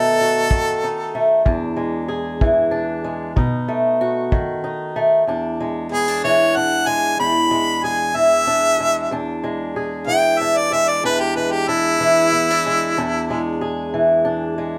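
A laid-back, straight-feel 12/8 groove at 62 BPM carries this gritty acoustic country blues fragment in E mixolydian, where a bright, close-miked harmonica with light vibrato and scooped notes leads up front in a jazz-style solo from 5.3 seconds, over a dark, boxy fingerpicked swing guitar moving between B7 and E7, while a distant, roomy kick drum with brushes appears only from 0.5 to 4.5 seconds, all in light reverb.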